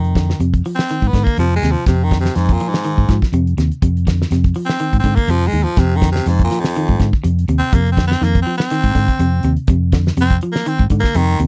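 A hypnotic, intense afrobeat groove at 123 BPM in F dorian opens with the full band at once: a raspy, gritty baritone saxophone takes a punchy, close-miked solo up front, over a twangy electric guitar at the edge of break-up playing arpeggios, a round, dark fingered bass and a damped 70s drum kit with a fat snare and tight kick. The 16ths carry a slight swing, and this short cut from a longer piece rests on a single Fm7 chord. The sound is dry and close, like a 1970s studio recording with little reverb.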